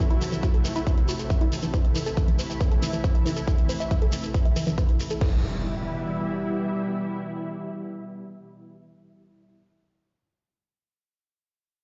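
A straight pulse drives this soaring, bittersweet uplifting trance fragment, with a punchy electronic kick up front, a big-room kit's metallic hi-hats and crash cymbals pumping in the background, and a grainy, close shekere. A silky, bright analog string pad holds sustained chords through sidechain pumping, while a lush, detuned unison pluck spins arpeggios under a filter sweep and delay. At 5.2 seconds the drums, shekere and pluck fall away and an electronic impact hits as the harmony settles on its home chord. The pad rings beneath the impact until 9.5 seconds, all heard as if through a big sound system in a bare room with a muffled top end.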